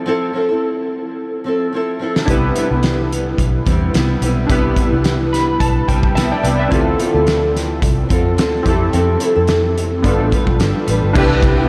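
Indie bedroom pop in C major at 108 BPM with a light 16th-note swing, sunny and hazy, soaked in a huge dreamy reverb and cut from a longer piece. A warm, fingerpicked nylon-string guitar opens alone over Fmaj7, and a loose drum kit with a fat snare, punchy kick and dark cymbals fills in at 1.7 seconds before settling in. Round, foam-muted electric bass and warbling, detuned lo-fi synth keys with chorus join at 2.3 seconds, the keys adding a nostalgic fill from 5.1 seconds as the chords move through Cmaj7, Dm7 and G7, and a faint, shimmering ethereal pad surfaces only in the final moments.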